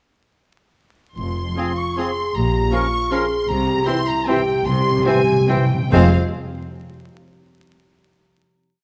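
Bittersweet and dark, this short orchestral ballroom waltz in F minor sways in 3/4 at 133-169 BPM with rubato: an expressive, distant violin section carries the melody with vibrato and portamento, doubled in unison by a pure silver flute, over dark, woody cellos and clear double basses, while a second violin section, lush violas, a bright vintage clarinet, an oboe and a soft-attack bassoon play after-beat chords in the background, a mellow French horn section adds a counter-melody, the tempo slows from 2.9 seconds, round calf-headed timpani roll in at 3.5 seconds, and the piece settles on a final F minor chord at 5.9 seconds amid concert hall reverb and vinyl crackle.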